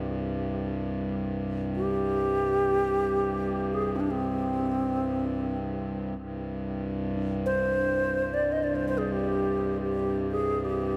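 An airy, bright bass flute with vibrato and tongued, expressive phrasing leads this haunting, spacious world meditation piece, its delay trailing over a reedy, breathing hand-pumped harmonium drone held low and close, while a ringing, metallic bronze singing bowl, struck with a suede striker and heard with slow beating, joins in the background at 7.2 s inside a huge, wet ambient reverb.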